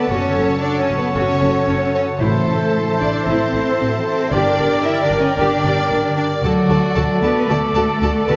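Bathed in a wet concert-hall reverb, this heroic, triumphant adventure-film cue at 114 BPM in D major moves through F#m, Am, Gm and D as a lush, vibrato-rich symphonic violin section carries the melody over smooth background violas, expressive cellos and woody double basses, while a bright solo oboe, an airy, hollow flute section, a rich chamber violin section and a very quiet, distant clarinet add second lines, a dark French horn section holds sustained chords, a ringing concert harp plays arpeggios, a roomy, very quiet trumpet section adds stabs, and hard-mallet timpani sound from 2.2 to 3.0 s.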